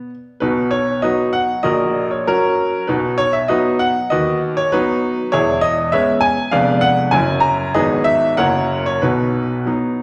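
A classical-period piano sonatina in B major moves at 91 to 101 BPM in 2/4, its rubato feel giving this short excerpt a playful, cheerful lilt. A clear baby grand piano plays alone throughout, spanning E1 to A#5, and sits up front with an intimate, natural character, long sustain and audible action noise. The harmony opens on B and passes through F#/A#, B/D# and C#m7/E before an Fdim7 at 6.5 seconds adds a brief touch of color. F#7, G#m7 and F#7 then lead back home to B at 9.0 seconds. A wet recital hall reverb surrounds the instrument, lending the room a gentle bloom behind the close, detailed piano tone.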